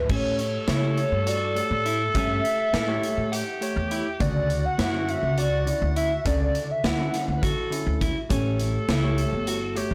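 Driving and intricate, this progressive instrumental band excerpt runs in 7/8 at 205 BPM in A mixolydian, moving from A7 to Dmaj7 and back. A hollow, warbling square lead carries the melody with chorus until 7.5 s, over a raspy, distant alto saxophone second line, bell-like tine electric piano accompaniment, and dark, slightly broken-up guitar arpeggios trailed by delay. A woody pizzicato upright bass sits up front with a big rock drum kit of punchy kick and bright cymbals, a very quiet grainy egg shaker joins at 8.3 s, and the whole recording is blown-out and overdriven in a moderate studio reverb.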